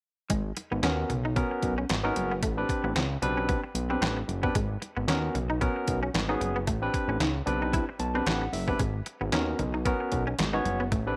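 At 0.3 seconds, a late-night, danceable early-eighties boogie funk groove opens with a clean, picked semi-hollow guitar riff through analog chorus, a fat, sawtooth analog bass up front, a detuned, overdriven 8-bit drum machine with a thumpy kick, handclaps, hi-hat and snare, and very quiet, thin-skinned congas played with soft hands. A barky, lightly overdriven tine electric piano joins at 0.8 seconds, comping over a swung sixteenth feel as the harmony sways between G#m11 and Am11. The piano takes a fill at 7.7 seconds, and light reverb sits over this excerpt cut from a longer piece.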